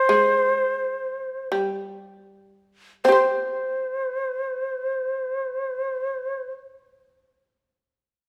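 Japanese traditional chamber music unfolds at a slow, rubato 38-47 BPM in 4/4, its mood austere and calm. A mellow, breathy bamboo shakuhachi carries the melody around C5, its end-blown tone marked by vibrato, tongued attacks, a touch of chiff and rolled-off highs. Beneath it, a fretless shamisen plays a second line between G3 and C5, bright, buzzing and powerfully percussive under the plectrum. Both instruments sit up front in a moderate recital hall reverb, and the opening phrase slows down over its first 3.1 seconds before a new section begins. The two parts fall silent near 6.6 seconds, leaving the hall's resonance in this short excerpt cut from a longer piece.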